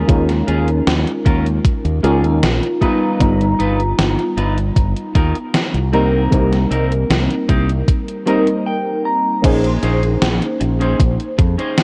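A thumpy, overdriven electronic kick and a gated 80s drum machine with crash, hi-hat and gated-reverb snare set a straight, unhurried 77 BPM pulse, with a bright fingered electric bass up front beneath them. This melancholic, woozy vaporwave piece in Bb dorian is cut from a longer track: a soft, round FM electric piano, washed in phaser, chorus and delay, comps through Eb9sus4, G7alt and Cm7. A dark, clean electric guitar riff, coated in lush chorus and 12-bit sampler grit, plays a fill from 7.9 seconds into a stop at 8.7 seconds before the harmony settles on Bbm11 at 9.4 seconds, all under a cassette-tape haze and light reverb.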